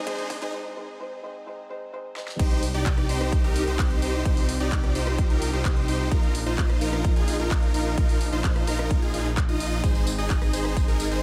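Dry, high-passed and loud, this anthemic, uplifting festival progressive house excerpt at 129 BPM begins as a brief build-up in which a faint riser, a soft felt-muted upright piano with audible action noise, pumping and delay, very quiet bowed symphonic strings, bright pumping supersaw chords, a punchy overdriven kick and an overdriven dance kit with a huge snare, handclaps, hi-hat, rim click, tambourine and crash all sound together, until the piano stops at 2.4 seconds and the drop arrives with a thick, chorused, tube-saturated detuned saw bass.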